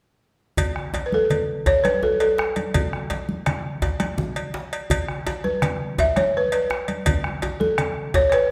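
Set in 12/8 with a straight feel, this short excerpt from a longer piece of West African traditional music has a festive, earthy spirit. A drum ensemble enters together at 0.6 seconds: a round bombo and thick-skinned, warm congas sound out in a live room, a medium-tuned djembe sits in a smaller space, and a metallic cowbell rings close and dry. At 1.1 seconds the balafon arrives as the melodic voice, its woody, buzzing tone struck with rubber mallets and placed full and up front, well above the quieter drums. The balafon keeps to a compact range, and its close-miked, dry character stands out against the reverberant recital-hall ambience around the ensemble. The congas drop away at 8.0 seconds, while the other instruments carry on to about 8.5 seconds.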